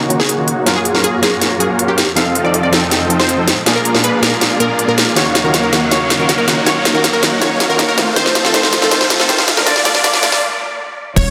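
A half-time 4/4 future bass build-up, lush and dreamy, has a tape-warm trap kit with sharp snare and crisp hats driving a drum fill beneath huge detuned supersaw chords under a filter sweep, a bright, punchy pluck melody with phaser and dub echo, a barky tine electric piano and dark bowed strings in the background, each pumping with sidechain, while a very quiet riser enters at 3.6 s, a break arrives at 10.4 s, and a thick saturated sub bass and knocking kick land at 11.2 s, all bathed in a lush hall reverb and a dense, heavily limited master.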